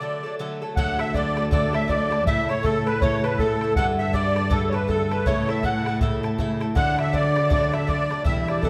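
Celtic folk hornpipe with a bright, rollicking swing, cut from a longer piece. A reedy, shimmering musette accordion leads up front, while a very quiet baroque flute, pure and wooden with vibrato and a crisp attack, adds a second line over a metallic, double-strung picked Irish bouzouki. At 0.8 s a ringing, fingerpicked concert harp joins faintly as another second line, a dark, bowed cello played sul tasto with a soft attack carries the bass, and an open, boomy bodhran drives the percussion, as the chords move from D through A and Gsus2 back to D in a wet recital hall reverb.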